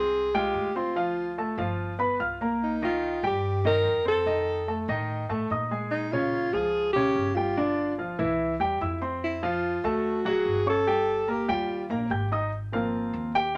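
A breathy alto saxophone carries the melody from the opening, with light vibrato, subtone and scooped notes, over an intimate grand piano whose action noise is audible and a woody, thumpy pizzicato upright bass, in a sophisticated, sunny Afro-Cuban jazz groove at 145 BPM in a straight 4/4. The mellow saxophone and the piano sit up front in a moderate studio reverb, with the bass lower in the mix, while the harmony moves through rich extended chords such as Fmadd9, Gm9 and Ebadd9. The saxophone stops at 12.1 seconds, and the piano takes a solo over the bass from 12.5 seconds, closing this short excerpt on an Ab69 chord.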